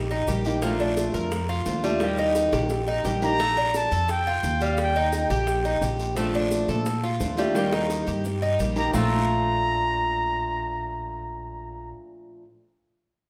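A bright, metallic Cuban tres plays arpeggios over a thumpy, woody pizzicato upright bass from the first moment of this sunny, danceable Cuban son and guajira excerpt in Bb major at 173 BPM. A dark, picked steel-string acoustic guitar joins them, along with tight high-tuned bongos, a raspy guiro and grainy maracas in the background, before a breathy, whispered trumpet with vibrato takes the intimate up-front melody at 3.2 seconds, the mix set in a large, wet studio reverb.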